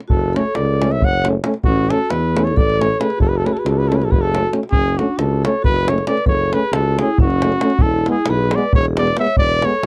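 Bittersweet yet fiery, this Balkan brass band piece in F# minor drives along in a straight 7/8 at 272 BPM counted in eighths, cut from a longer performance. A deep, acoustic davul sets the pulse from the very start with a small-room sound, and almost at once an up-front trumpet takes the melody between F#4 and F#5, its mellow tone carrying a light vibrato in a classical style. Beneath it, a tuba, also up front and touched with vibrato, holds the bass between E1 and E2, while a vibraphone struck with medium hard mallets, motor off, rings with a metallic, close-miked edge in the background as a second line. A smooth-topped trombone and a roomy, distant euphonium fill in the accompaniment in a narrow middle range, the euphonium bringing a gentle warmth. The harmony moves from F#m to A and back, then shifts to E at 7.8 seconds in the second half, all captured in a dry, close studio sound of the 1970s with light reverb.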